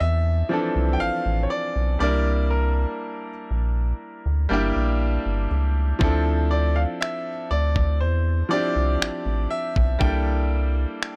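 A dry, gritty recording in a small room opens this slow, late-night contemporary R&B excerpt, sensual in mood and built on lush Dm9 and C9 chords. A clear baby grand piano with long sustain carries the melody above a brilliant grand piano accompaniment, while a rubbery, hollow square bass with a filter pluck sits up front underneath. At 6.0 seconds a dusty, compressed sampler-style kit enters with finger snaps and a thumpy kick, before the harmony turns to a C13.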